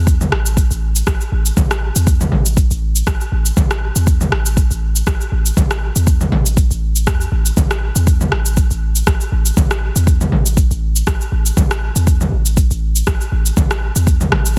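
A deep, boomy 808-style bass with a sine core, a noise layer and a fast, decaying attack pumps up front against a deep electronic kick and a tape-warm, layered deep house kit of cabasa, rim click and toms with soft clipping on the snare, giving this spiritual, driving afro house excerpt a dense, heavily limited modern sound in a dry space.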